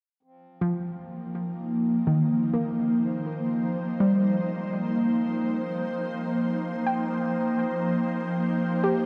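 A reedy harmonium drone fades in from the background at 0.2 seconds, opening this serene, free-time ambient excerpt on an Fsus2 chord in a vast, echoing cathedral space. Soft, round plucked arpeggios with chorus and delay enter at 0.6 seconds, and an ethereal, airy pad sits up front from 1.1 seconds, holding mellow sustained chords coloured by ensemble chorus, phaser and shimmer reverb. The mood stays spacious and serene throughout.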